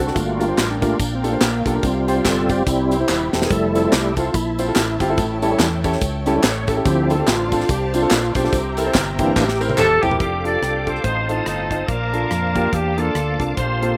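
Reverent and jubilant, this uptempo gospel excerpt moves at 143 BPM in 4/4 with a swung eighth-note feel in F major. A bright, reedy tonewheel organ carries a solo through the first 10.2 seconds, its sustained chords colored by key click, chorus vibrato and a fast rotary speaker, while a clear concert grand piano with deep bass and long sustain supplies accompaniment touched by slapback echo. Beneath them, a round, punchy fingered electric bass anchors the low end, and a polished, up-front studio drum kit with a high-tuned snare and tight kick drives the groove, adding fills at 3.1 and 9.4 seconds. Tambourine, egg shaker and group handclaps sit distant with slapback echo before dropping out at 10.1 seconds, as a lush, bowed string section holds smooth sustained chords in the background. At 9.8 seconds a warm, vintage horn section enters up front with the melody, its soft attack and vibrato lending a jazz-style ensemble sound as the harmony turns from Gm7 through A7 and C7 to F69 and Bbmaj7. 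The mix is dry, recorded outdoors with little reverb.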